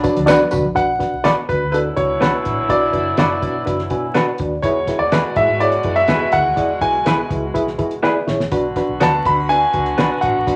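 A bright concert grand piano carries the melody from the first moment of this urgent, driving 1960s-style soul cut, joined by a clear, tight saxophone section on a second line, a reedy, slightly out-of-tune electric piano with overdrive and tremolo, a cloth-damped, thuddy drum kit with a fat snare, and a brief burst of tambourine and handclaps. At 0.2 seconds a round, foam-muted electric bass enters along with a fleeting touch of ringing congas, and at 0.3 seconds a slightly broken-up, lo-fi electric guitar with tremolo begins adding up-front stabs. The electric piano steps out with a fill at 3.7 seconds leading into the harmony's shift, the drums fill before the return to the opening chord, and vinyl crackle sits over a moderate large-studio reverb.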